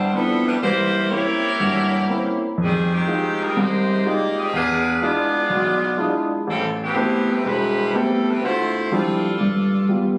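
A phone in the room catches this short excerpt of a jazz performance, with a wet recital-hall reverb, studio reverb and compression, and lossy compression artefacts that roughen the edges. At 123 BPM in 4/4 with a swung eighth-note feel in C major, the mood is brassy and joyful. A tight saxophone section carries the melody across a range spanning Eb3 to F5, clear with light vibrato, sounding both up front and distant in a roomy space. A concert grand piano provides the accompaniment from E1 to G4, polished and present with deep bass. The harmony moves through rich chords, from Cmaj9 and C7b9 through Fm9, E7b9, Am9 and Dm11, arriving on G7 at 9.4 seconds, with both parts playing throughout the 10.2-second clip.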